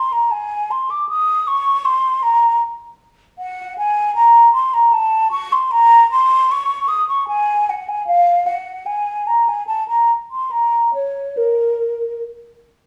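A mellow, hollow concert flute plays alone from 0.0 to 12.2 seconds, its airy tone shaped by vibrato and soft attacks as it ranges from Bb4 to Eb6 in this solemn, flowing passage from a longer baroque-style classical fantasia. The line moves in a rubato 3/4 at roughly 69-79 BPM, settling into Bb minor from 3.4 seconds, with tuning set to A4 = 441 Hz. The flute sits up front while a moderate stone-room reverb and small-room ambience place the listener further back in the space.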